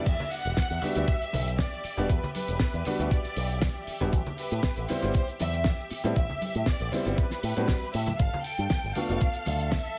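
Nu-disco with a sensual, groovy mood, heard in a short cut from a longer piece in straight 4/4, moving through Em7, Am9 and G7. A rich, expressive violin section carries the melody with vibrato and a digital delay, while a clear, focused string section holds lush sustained chords in the background with sidechain pumping. A dark, mellow grand piano with audible action noise and long sustain plays the accompaniment, also pumping and delayed, until it stops at 9.3 seconds. Up front, a picked electric bass with a bright envelope filter drives the low end alongside a thumpy, tape-warm electronic kick drum re-recorded in a small room. A dry, damped 70s drum kit with a fat snare, hi-hat, crash cymbal and cabasa sits mid-forward in studio reverb, and ringing cabasa and congas add close, dry percussion behind it, all within a small room ambience.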